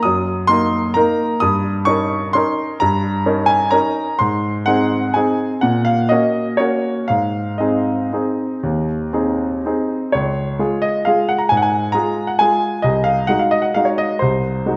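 In a rubato 3/4 lilt drifting between 112 and 145 BPM, this playful, sparkling classical piano waltz in Db major is a brief 14.8-second passage cut from a longer piece, where a solo grand piano sits clear, present and up front across C2 to Eb6 in a recital hall's wet reverb, moving through Ebm/Gb, Eb7/G and Ab harmonies before arriving on Db at 10.1 seconds and ending on Ab7/C.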